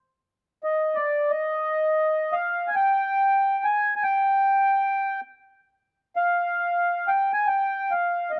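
A reedy, mid-forward accordion with slow beating enters alone at 0.6 s and plays up front in free time, carrying a melancholic, longing Arabic maqam mood through moderate spring reverb, small room ambience and cassette tape grain until this fragment of a longer piece breaks off at 8.4 s.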